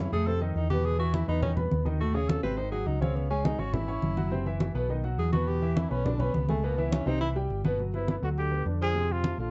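A tenor saxophone carries a jazz-style solo from the opening through 7.8 seconds, its tone smooth at the top, with vibrato and scooped notes, in this sunny, lively Afro-Cuban jazz cut taken from a longer piece. The tempo is a brisk 208 BPM in straight 4/4. A concert grand piano with deep, natural low end accompanies through harmonies that drift from E5 and B13 to C#madd11, Em7 and C. Underneath, a round, dark hollow-body electric bass sits up front, and low-tuned, damped congas played with soft hands add a thick-skinned pulse. At 7.9 seconds a breathy trumpet takes the melody up front, with light vibrato and scooped notes over a Gmaj7 chord. The production is dark and warm, with a moderate club reverb.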